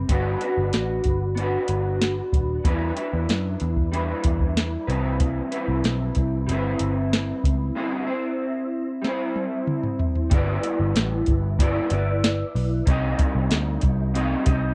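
Hazy and laid-back, this short cut from a longer bedroom-pop and indie-pop piece moves at an unhurried 94 BPM in G major with a straight 4/4 feel. An electric guitar played through a small old amp carries the accompaniment, its picked tone dark, slightly broken-up and lo-fi, colored by an ensemble chorus and a warbly pitch drift. Beneath it, a vintage muted picked electric bass sounds round, punchy and foam-muted, while a soft analog rhythm box supplies a deep kick, crisp snare, metallic hats and toms. The chords drift from Gmaj7 through Em7 and Cmaj7 to a D9sus4 at 7.8 seconds, where a break opens and a drum fill runs from 9.0 seconds into a new section at 10.3 seconds that moves from G6 to Cm. The sound is dry and close, in the manner of a 1970s studio, with all three parts placed up front.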